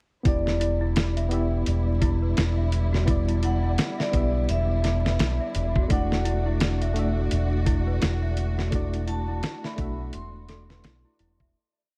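A gritty, thumpy sampler-style breakbeat with a fat snare and a round, punchy dub bass line drive this hypnotic, smoky trip hop piece in E minor at 85 BPM, where a reedy, lightly overdriven electric piano with tremolo, sampler grit, a filter sweep and tape echo holds syncopated chords, a metallic hard-mallet vibraphone repeats a ringing riff, a delicate, slightly out-of-tune celesta steps through arpeggios, a smooth bowed string section sustains Em7 and D/E chords, and a flickering granular texture holds a high note from 1.1 seconds under vinyl crackle through the fade-out that begins at 7.8 seconds.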